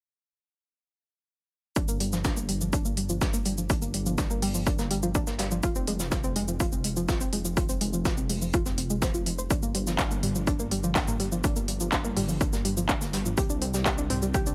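A warbling, lo-fi pluck sits up front, spinning dark arpeggios through chorus, dub echo and sidechain pumping in this brooding, dramatic melodic techno excerpt at 124 BPM in G phrygian, cycling through Gm7, Fm, Gm7 and Csus2. From 1.8 s a heavy, overdriven kick drives the straight 4/4 pulse alongside a deep, rumbling detuned saw bass that pumps with the sidechain, while an overdriven techno kit adds handclaps, smooth hats, shaker and toms. Far in the background, a distant, roomy brush kit contributes a high-tuned snare and filtered hats, all set inside a digital ambience.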